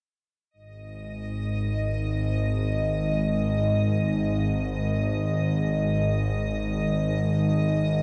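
A tense, string-like drone with a bowed quality swells in slowly from 0.8 s, sitting up front in the low register with vibrato and a detuned, ring-modulated grit in this vast, ominous dark ambient fragment. Just after, at 0.9 s, an icy, crystalline glass pad fades in softly far above, its airy, chorused shimmer held as a single high tone. Both parts sustain to the end under an enormous reverb with a 7.6 s decay, leaving the dreamy mix thoroughly soaked.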